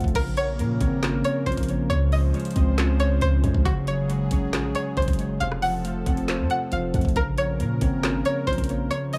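A twangy, nasal resonator pluck carries the melody over a dark, hard-hitting trap beat in Bb minor at 137 BPM with a half-time feel, its bright tone thickened by chorus and trailed by dub echo. A mellow tine electric piano and a smooth, detuned analog pad fill out the chords moving from Bbmadd9 through Dbmaj7, Gbsus2 and F. Beneath them a deep, sine-like 808 bass sustains until 8.9 seconds, and an up-front kit of knocking kick, woody snare, metallic hi-hats, handclaps, rim clicks and crash cymbal drives this echo-heavy excerpt set in a small room.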